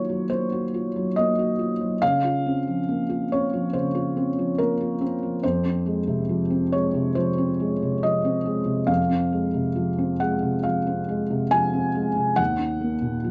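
Neoclassical minimalist piano in a wistful, intimate mood, this rubato excerpt features a solo felt-muted upright piano, soft and dark with thick felt and audible action noise, sitting up front in a moderate studio reverb as it moves through minor chords from Ebmadd9 to Ebm across its 13.3 seconds.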